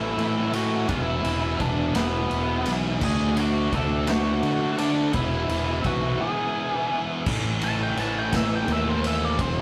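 Cathartic and bittersweet, this 6/8 quiet-loud alternative rock excerpt sets a dark octave-fuzz lead guitar melody over a compressed fuzz guitar riff tucked in the background, a bright, scooped high-gain guitar riff, a growly, up-front fuzz bass and a raw garage drum kit with a punchy kick and a gritty, saturated sound, while a soft, flute-like tonewheel organ with slow rotary speaker and chorus vibrato holds background chords until 7.3 s, when the lead guitar breaks into a solo, the whole captured as a rough rehearsal-room recording with stone-room reverb and tube saturation.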